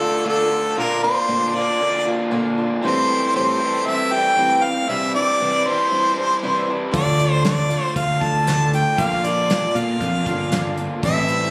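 Reflective and wistful, this short cut of folk rock with a heartland rock streak moves at 117 BPM in a straight 4/4, circling through Dm, Bb, Am7 and Cadd9. A clear, close-miked harmonica carries the melody up front, its light vibrato and scooped notes giving it a pop-style solo voice. Beneath it, an old ladder-braced acoustic guitar is picked with a boxy character, while a raw, bright garage guitar, overdriven and double-tracked, plays a lo-fi riff. At 6.9 s a warm picked electric bass and a soft brush kit arrive, the kit adding a punchy kick and medium-tuned snare in a small room. Light reverb and the sound of a phone recording in the room give the piece an intimate, unpolished feel.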